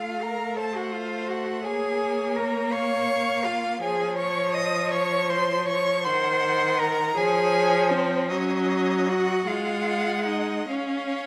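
An up-front bowed cello with a focused tone and vibrato carries the bass line in this slow, melancholic and yearning fragment of a romantic string quartet movement in 6/8, moving with rubato at about 44-57 BPM in dotted quarters. The viola, equally forward with a smooth top, supplies the accompaniment, while one violin sings the melody with light, even vibrato and a second violin traces a higher line reaching Eb6. The harmony starts in Bb minor and turns toward Db major from 3.8 s, and the quartet plays throughout inside a moderate recital hall reverb.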